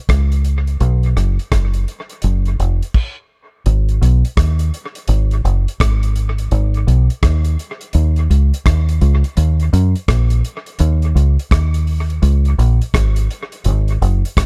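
A swung sixteenth-note groove at 84 BPM in 4/4 drives this hypnotic, serious roots reggae excerpt in G# dorian. A round, punchy, foam-muted fingered electric bass sits dark and up front, while a damped 70s drum kit with a tight kick, rim click, hi-hat, dusky crash cymbal and a rolled-off top is dry, set lower and carries dub echo. Both parts halt together for a stop from 2.9 to 3.7 seconds before a new section begins, all in a close, echo-heavy mix with little reverb.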